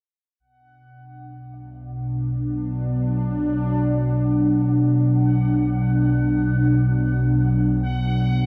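Drenched in a vast, echoing cathedral reverb, this expansive, cosmic stretch of ambient, sequencer-driven space music places a warbling, vintage pad of detuned sawtooth with subtle chorus up front on sustained chords from 0.4 seconds, while a fat analog bass with a filter sweep fades in deep in the background and a bubbling texture of random filter steps, carrying its own chorus and reverb, fades in from 0.7 seconds.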